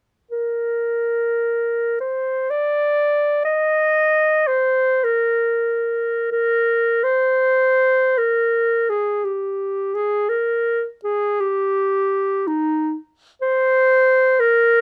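Serene and lyrical, this short classical fragment from a longer work features a clear, up-front solo clarinet singing alone in a free, rubato triple metre from 0.3 to 14.8 seconds, set in a dark production with light reverb and moving from its opening section into a second section at 7.0 seconds.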